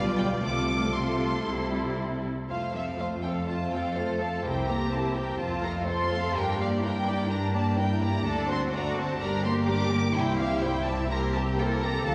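Violas, cellos, double basses and a second violin line with a focused, smooth top sound together from the start, the basses bowed and up front and the violas distant and lush, before the melody violins enter at 0.2 s, smooth and even. This quick, graceful and spirited classical-period movement for string orchestra moves in 4/4 with a rubato feel, every section bowed with vibrato, as the harmony travels from F/C through Gm and D7 to a closing C7. A church reverb with a 3.2 s tail gives the strings a resonant space, and the passage is cut from a longer piece.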